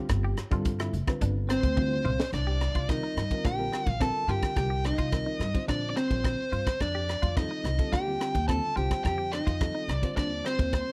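Slick and funky, this electric jazz fusion excerpt opens on a reedy, worn electric piano with tremolo, a woody pizzicato upright bass and a crisp fusion drum kit with a high-tuned snare and a punchy kick, while a bright, twangy clean electric guitar plays chorus-tinged stabs in the background. At 1.5 seconds a dark, overdriven lead guitar takes the melody up front, joined by a hollow-body jazz guitar on a second line, and a drum fill leads into a new section at 2.3 seconds. The harmony moves from G9sus4 through Cm9 to F13, all set in a small, pumping room.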